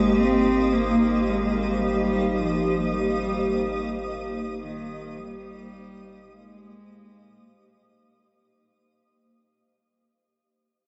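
A dark, washed recording drenched in a huge reverb with a nine-second tail, this brief fragment of a longer ambient piece drifts at 54 BPM in a straight 4/4, tuned to A4 = 435 Hz. A rich, reedy cello, bowed by one player, carries the melody between Eb3 and C4, sitting close with a tape echo trailing its gut-string, period-style tone. Alongside it a cloudy, evolving granular pad holds sustained chords up front, while a tense, string-like drone hums very quietly and a twinkling granular layer sparkles high above. A round analog bass anchors the harmony on a low Ab1 and fades out, as the whole recording does across its 8.5 seconds. The harmony rests on a single Abmaj13 chord in Ab major, leaving a weightless, peaceful mood.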